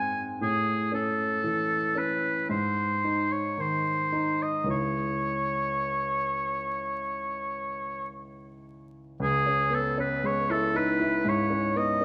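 Yearning and elegiac, this romantic classical duo, cut from a longer piece, moves with a rubato feel as a clear oboe with light vibrato sings the melody, touching a high G#5 at 2.5 seconds, over a polished, present grand piano accompaniment with long sustain, all set in a moderate concert hall reverb with a layer of vinyl crackle.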